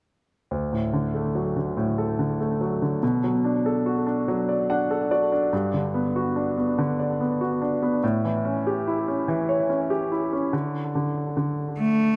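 A moderate plate reverb and heavy echoes surround this tender, romantic pop excerpt, which moves at a slow 48 beats per minute in 6/8 in D major. A clear, polished concert grand piano sits up front as the accompaniment, its deep bass, short sustain and audible action noise lending an intimate, close-up quality, with an analog delay trailing behind it. The piano moves through D, Bm7, Gmaj7 and A7, adding a brief fill at 4.3 seconds. At 10.5 seconds the harmony falls away into an open passage. Just before the end, at 11.8 seconds, a single bowed cello enters on one biting, nasal note with light vibrato, its earthy tone bright and forward in the mix.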